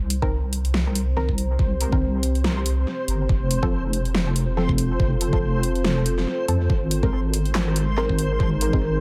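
Deep dubstep at 141 BPM in a half-time feel with a light swing, meditative and dark, moving through Cm7, F and Abadd9 in this echo-heavy excerpt cut from a longer piece. A deep, wobbling square-and-sine bass sits up front from the start alongside an overdriven, knocking electronic kick and a dubstep kit with a huge snare, bright hats and handclaps run through tape echo, while muted, detuned sawtooth chord stabs pluck through chorus and dub echo. From 1.1 seconds a moody, slow-attack ambient pad with a sub octave holds sustained chords, and a reversed, granular triangle texture swells dreamily on a high C5 from 0.9 seconds.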